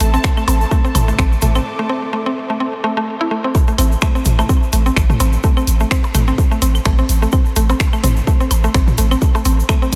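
A cloudy, detuned granular pad hangs over a woody, round mallet-like synth pluck riff, a deep sine sub bass and an overdriven analog drum machine with finger snaps and hi-hat, while an electronic kick arrives at 0.2 seconds in this cool, sparse minimal techno piece in A minor at 127 BPM with a swung 16th feel. The pad ends at 1.7 seconds for a break, then the drop lands at 3.5 seconds, with the punchy, tape-warm kick and the pitch-dropping bass up front, the bass pumping against the sidechain, and the bright, chorused pluck trailing tape echo. Overdriven claves, blips and toms run through analog delay alongside a grainy egg shaker, all set in light digital ambience.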